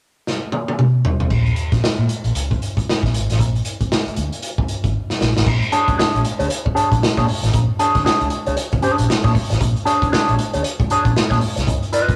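This rough rehearsal-room recording sits in a wet booth, giving a short, close ambience to a strutting, playful funk groove at 116 BPM in 4/4, with a 60% swing on the sixteenths. It is cut from a longer piece and opens with a gritty, saturated breakbeat drum kit at 0.3 seconds, its tight kick, medium-tuned snare, hi-hat, toms and shadowy crash cymbals sitting up front with a rolled-off top, starting off with a fill. At 1.3 seconds a vintage fingered electric bass arrives over a Bbm chord, its foam-muted tone round and punchy through the amp. Another drum fill leads into a shift to Bb7#9, and at 5.7 seconds a mellow, clean electric guitar steps forward, played with the fingers and coloured by wah and spring reverb. The crunchy drums, the bass and the guitar carry the playful swagger through to the cut.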